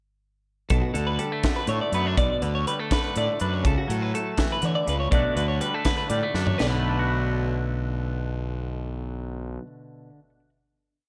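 A lilting 6/8 pulse drives this short, wistful piece of math rock and midwest emo, its intricate parts arriving together at 0.7 seconds. A crisp fusion drum kit sits up front with bright cymbals, a high-tuned snare and a punchy kick, tracing a 6/8 groove across hi-hat, splash and toms before a fill at 6.3 seconds and its final hit at 6.7. Underneath, a fuzz-drenched fingered electric bass plays a round, overdriven, syncopated riff with a dark, forward presence. A twangy electric guitar plays a rolling fingerstyle arpeggio touched by slapback echo, while a clean, compressed twelve-string electric guitar repeats a glistening ostinato high above. The harmony moves from Bm7 to F#m7/C# and back to Bm7, and the guitars and bass let a final chord ring out from 6.6 seconds in a small room with light reverb.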